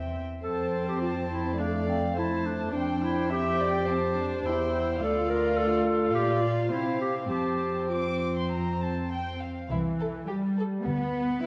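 In a straight, quick 4/4, this lively, cheerful classical-period orchestral passage sets chamber violins singing a high melody with light vibrato over a second violin line, rich violas and dark, up-front cellos, all bowed sul tasto for an intimate, close sound. A distant, roomy solo clarinet adds a warm second line from 0.4 to 9.1 s, and a shadowy double bass section briefly joins at 9.7 s as the music moves into a new section. The moderate stage reverb adds space, while a worn, warbling old cassette quality gives the pitch a warbly drift.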